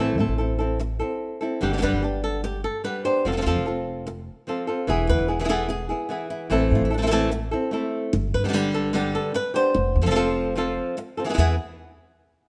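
A fingerpicked flamenco guitar and a pizzicato upright bass start together at the opening, setting an intense, fiery flamenco mood at a brisk 148 BPM in a straight 4/4. The guitar carries the melody up front, its warm acoustic tone ranging from D3 to C5 with audible finger squeak on the strings. Beneath it, the steel-strung bass plays a woody, thumpy line low in the register, between E1 and A2. The harmony cycles through the descending Am, G, F, E progression, then begins the same pattern again at 6.5 seconds before dropping away at 11.4 seconds, shortly before both instruments stop. A moderate stone-room reverb surrounds the pair, and this excerpt is cut from a longer piece.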